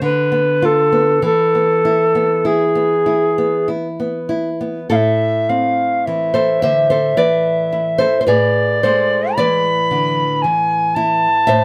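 A mellow alto recorder carries the solemn, melancholic melody with a pure, woody tone, vibrato and a crisp, chiffy attack over fingerpicked nylon-string guitar with a warm tone and fresh strings in this slow, rubato romantic duo in A minor and 3/4 at about 48-58 BPM, which moves from Bm7b5/D to E before settling on Am at 4.9 seconds and E7/A, all caught up front by close, detailed microphones with light reverb in a brief excerpt from a longer piece.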